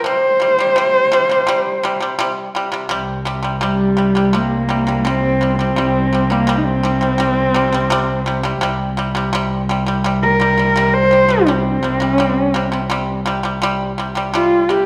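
A straight 4/4 pulse at 84 BPM carries this windswept, vast Mongolian folk excerpt, where a husky, boxy horsehead fiddle sings the melody with vibrato and portamento over dry, percussive pipa arpeggios plucked with fingerpicks, joined at 2.9 seconds by a smooth, rich cello drone on C2, all set in a recital hall with a 1.3-second reverb tail.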